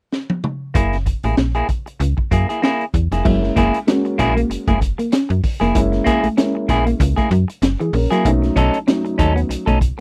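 Funky and playful, this 96 BPM groove in F# mixolydian swings its sixteenths lightly in 4/4 and is cut from a longer piece. A crunchy breakbeat kit opens with a drum fill, its punchy kick, high-tuned snare, toms and dark cymbals sounding gritty and saturated with a rolled-off top. At 0.7 seconds a clean semi-hollow electric guitar enters on an F#9 chord, joined by an up-front, snappy FM bass with a metallic, digital attack. Around 3.3 seconds a second section brings mellow, woody upright piano stabs and a slightly broken-up electric guitar riff set in the background, before the harmony moves to B9 at 8.3 seconds. The dry, close recording has a 1970s studio character with little reverb.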